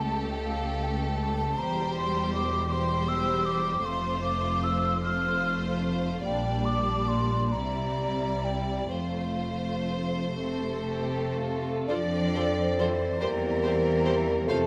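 Classical orchestral music in a slow, romantic 6/8 movement in F major, solemn and yearning, with a rubato pulse around 37-55 BPM. Focused, vibrato-rich violins carry the melody over a hollow, mellow flute line, a second, more distant violin part, lush background violas, and a smooth cello and double bass foundation, all set in a moderate scoring-stage reverb. A dark solo bassoon enters at 10.4 seconds, and at 11.9 seconds a shadowy horn section and a warm, roomy trombone section add sustained chords in the background before this excerpt of a longer piece ends.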